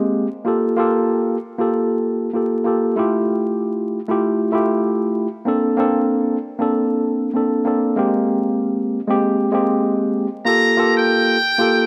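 Moody and tough, this short hip hop excerpt in G dorian rides a swung 96 BPM groove, with a worn, slightly out-of-tune tine electric piano up front carrying chords from Gm9 through Fmaj9/A, Bbmaj9 and Abmaj9, its clean, direct tone softened by cassette tape coloring. At 10.5 seconds a muted trumpet enters with a brilliant, buzzy jazz solo line sitting high in its range with light vibrato, as the harmony returns to Gm9. A moderate plate reverb and vinyl crackle lend the whole a dusty, atmospheric sheen.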